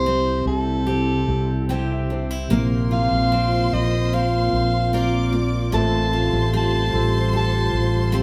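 A breathy soprano saxophone carries the melody up front in this heartbroken pop ballad excerpt at 75 BPM, its intimate subtone and scooped notes floating over a warm grand piano that adds a fill from 1.3 to 2.5 seconds. Bright picked steel-string acoustic guitar arpeggios and a glassy FM pad with ensemble chorus and its own reverb fill out the harmony, while a round, punchy fretless electric bass sits dark and up front beneath the chords moving from C to Bbsus2 to Fadd9/A. At 2.5 seconds a rich violin section enters with a bowed, vibrato-laden second line, the whole band sounding live together in one moderately reverberant room.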